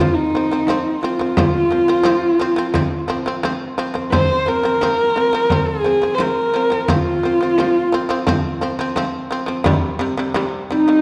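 A husky horsehead fiddle carries the melody up front, bowed with vibrato, portamento and a soft attack, over buzzing plectrum-plucked shamisen arpeggios and a band-limited, vintage-toned frame drum in this short Mongolian folk excerpt at 87 BPM in 4/4. The mood is vast and windswept, set in a dark, warm production with a wet scoring-stage reverb. A breathy, bright bamboo xiao enters only at 10.7 seconds with a tongued second line on Eb4, shortly after the passage shifts to a new section.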